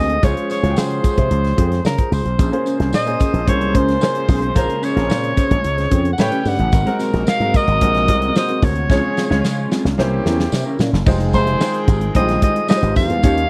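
Polished 1980s jazz-funk pop with a bittersweet, urban mood: a vibrato-laden soprano saxophone with scooped notes and slapback echo carries the melody up front over a growly, envelope-filtered slap bass and punchy studio drums with bright cymbals, while a short-sustain baby grand piano and a dark, clean electric guitar riff, both touched with subtle chorus, sit alongside a smooth-topped horn section and jingly tambourine in the background, a swirling, phased string machine enters very quietly at 2.4 s, and a drum fill from 8.9 s leads into the closing section at 11.1 s, all captured in a dry, close 1970s-style studio sound.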